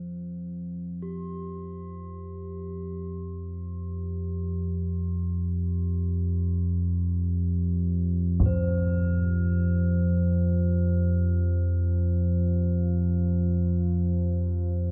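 A dark, ominous drone rumbles up front from the first moment, holding an F5 chord in free time, while a bright, metallic bronze singing bowl with slow beating fades in beneath it over the full 14.9 seconds, and a low-pass-filtered taiko ensemble sounds briefly from the background with heavy sticks at 8.4 seconds, all set in a vast cathedral reverb that gives this desolate, unsettling dark ambient excerpt, cut from a longer piece, its echoing depth.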